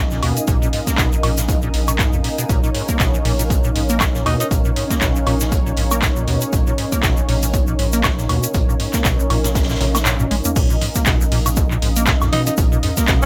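Gritty and driving, this acid house cut from a longer piece rides a swung 4/4 groove built on a punchy, up-front electronic kick that enters at 0.5 seconds and a booming, tape-warm analog drum machine with a tonal snare, metallic hats, handclaps, toms, woodblock and crash. Underneath, a faint, saturated vintage drum kit adds a mid-forward snare and hi-hat, while a grainy egg shaker sits close and dry. A squelchy, hollow square-wave acid bass carries the riff with a resonant filter sweep, overdrive, ensemble chorus and tape echo. A deep, thick triangle sub bass holds the bottom, a smooth, detuned sawtooth pad sustains chords, and a cloudy, evolving granular pad drifts as texture above, all three pumping against the kick. After a drum fill, a band accent and a short break in the kick, the drop lands at 10.6 seconds. A raspy alto saxophone with scooped notes, vibrato, 12-bit sampler grit and delay appears briefly at 4.3 seconds and returns late in the drop at 12.3 seconds.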